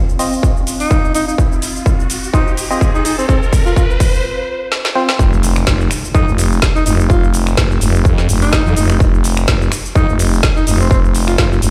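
Aggressive and gritty, this bass house cut runs at 126 BPM with a swung groove, opening on a build-up where a riser climbs over a dark, warbling, lo-fi pad with chorus and sidechain pumping, a hollow, nasal organ stab under a filter sweep and dub echo, a punchy up-front kick, and a garage kit of finger snaps, shaker, woody snare and overdriven metallic hats with drum fills. A breathy, close-miked alto saxophone carries an intimate, jazz-style solo with vibrato and scooped notes through dub echo from 0.8 seconds. After a short break, the drop lands at 5.2 seconds with an electronic impact and a growling, thick FM bass with overdrive and sidechain pumping, all set in a stone room reverb as if played on a big sound system in a bare room.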